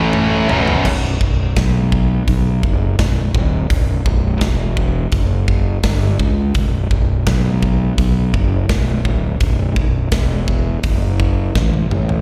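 Heard as a live gig through the venue's PA with recital-hall reverb, this dark, relentless heavy metal fragment in B minor at 84 BPM opens with two bright, distorted, picked electric guitars, one high-gain and one tight, both carrying slapback echo, that strike a B5 riff and stop at 0.8 s, while an up-front, round, overdriven fingered bass with dark fuzz runs to the end and a polished acoustic drum kit with airy big-room ambience and a medium-tuned snare frames the passage with fills, the last starting at 11.6 s.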